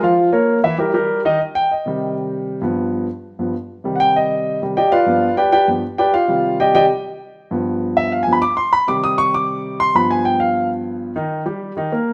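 A warm concert grand piano carries this short jazz excerpt alone, sounding intimate and up front, with audible action noise, deep bass and a long, natural sustain. The mood is driving and sophisticated, moving in a straight 4/4 feel. After a brief opening passing through Bbm and Eb, the piano settles into a solo from 1.4 seconds that circles between Cm-family chords and G7, alternating Cmadd9 and G7 before landing on Eb at 11.2 seconds. Its range stretches from G2 up to Eb6. The playing sits in a stone room with a wet reverb, giving the close piano tone a live, roomy halo as the excerpt ends at 12.1 seconds.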